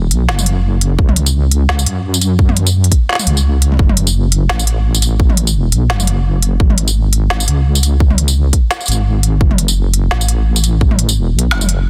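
A half-time drum and bass groove at 171 BPM in 4/4 drives this tense, cinematic clip in F# minor, with a 57% swing on the sixteenths giving the half-time feel a slight lilt. An electronic drum kit of hi-hat, woody snare, tambourine and toms sits up front, its smooth hats and overdriven grit coloured by a small-room re-recording. A hard-clipped electronic kick joins at 1.0 seconds and sits up front in the mix. Alongside, a deep, dark, warm wobble bass spanning E1 to F#2 blends sawtooth and sine tones, detuned and compressed, with a fast attack, long sustain and a chorus shimmer. The sound is dry and close, with a dense, heavily limited modern master on this fragment of a longer piece.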